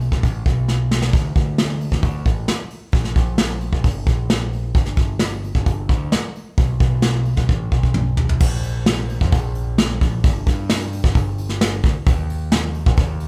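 Restless and bittersweet, this alternative rock passage moves at 132 BPM in a straight 4/4, drawn from the quiet-loud style and cut from a longer piece. A growling, picked electric bass carries the low end throughout, its bright, overdriven tone sounding direct and amped as it moves between G1 and G2. Beside it, a soft brush drum kit sits up front, with a medium-tuned snare, a punchy kick, hi-hat, toms and crash cymbal all played with brushes. A drum fill arrives almost at once, and another from 7.5 seconds leads into a new section at 8.4 seconds. The two parts sound like a band playing live together in one room, wrapped in a moderate large studio reverb and tuned to A4 = 442 Hz.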